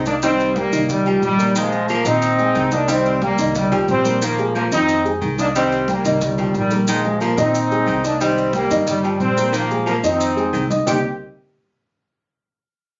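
Salsa at 180 BPM in C minor, driving and danceable, where a bright, punchy trombone section carries the melody up front over a mellow baritone saxophone second line, growly pizzicato upright bass, a dark, boxy upright piano, ringing congas kept very quiet and grainy maracas, all cycling between Cm7 and Bb7sus4 in this short cut from a longer piece, heard through a compressed phone capture of the studio room with moderate reverb and a dulled top end.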